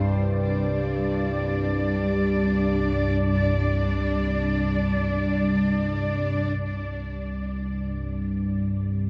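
A warbling, evolving analog drone sits up front with chorus on its resonant sawtooth and pulse-wave tones, holding low between C2 and G2 while a studio cello section sustains chords from G2 to D5, its soft-attack sul tasto bowing and vibrato intimate and close. This ominous dark ambient drone piece moves in free time, cut from a longer work, with a quartz singing bowl ringing barely audible and pure with slow beating until it stops at 6.6 seconds. A huge, wet reverb and worn cassette tape with warbly pitch drift give the whole sound a vintage haze.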